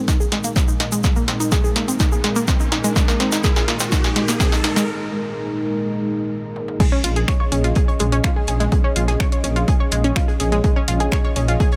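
A light, digital-sounding reverb wraps this melancholic, hypnotic melodic techno excerpt, cut from a longer piece and moving at 125 BPM in a straight 4/4. A moody, mellow analog pad with chorus holds sustained chords under a lush, detuned unison pluck playing delayed arpeggios, and both pulse with sidechain pumping. The opening build-up pairs a filter sweep on the pad and drum fills with a background riser, a grainy, close shaker and a punchy, tape-warm electronic kick that sits up front beside an analog drum machine of snare, hi-hat, toms, finger snaps and crash cymbal. A short break begins at 4.9 s, and the drop lands at 6.8 s, where a very quiet, muffled, lo-fi soul kit adds hi-hat and a fat snare while the harmony moves from Absus2/Bb to Db/Bb. From 7.0 s a rumbling, saturated detuned saw bass takes a forward place on a low Bb, pulsing with sidechain pumping.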